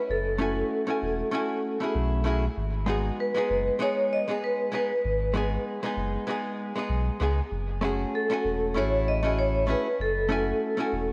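Sunset chillout with a relaxed, smooth mood, moving at 97 BPM in 4/4 with a gentle swing on the sixteenths and set in F# dorian. A vibraphone played with medium mallets carries the melody from the very start, its metallic, ringing tone darkened and shimmering with a fast motor vibrato, trailed by tape echo. A round, sine-like sub bass enters at 0.1 seconds, sitting deep and up front with a sustained, tube-saturated weight. At 0.4 seconds a hollow-body jazz guitar joins in accompaniment, its clean, picked electric tone dark and compressed, also carrying tape echo. The harmony drifts from F#m9 to G#m7 and back to F#m9, all bathed in a lush hall reverb and the warbling pitch drift of worn cassette tape, in a short passage cut from a longer piece.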